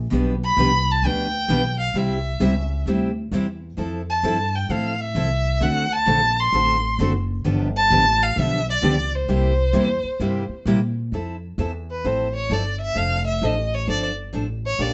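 Acoustic string swing in the jazz manouche style, this playful excerpt moves at 131 BPM in F major with a lilting swung feel. A woody, growly upright bass sits up front, plucked and thumpy, while two picked steel-string acoustic guitars supply the accompaniment: one mellow with an auditorium body, the other bright and full-bodied with audible finger squeak. The second guitar drops out at 10.8 s, leaving the first guitar and bass to carry the accompaniment. Over them a bowed violin carries the melody with vibrato, soft attacks and expressive portamento, sounding distant in tone yet placed forward in the balance. At 11.1 s the music shifts into a new section where the violin takes a solo over Fmaj7 and Dm7/F, after a progression that cycles through G7/B, C, Fmaj7, D7, G7 and C7. The band plays live together in one room with moderate studio reverb and a soft, rounded top end.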